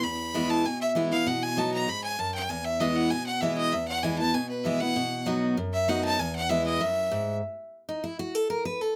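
Bluegrass at a brisk 195 BPM in 4/4 with a straight feel, this short cut from a longer piece is joyful and rustic, set in E major. A bright fiddle carries the melody from the start, bowed by one player with a biting edge, an airy bow sound and light vibrato, sitting close and up front as it plays with intensity. Beneath it, a picked steel-string acoustic guitar with a full-bodied dreadnought tone provides accompaniment, also up front. The harmony moves between E and B until the fiddle drops out at 7.3 seconds, and from 7.4 seconds the guitar takes a brief solo over an unaccompanied stretch to the end at 9.0 seconds. Close, detailed microphones and light reverb give the recording an intimate, present sound.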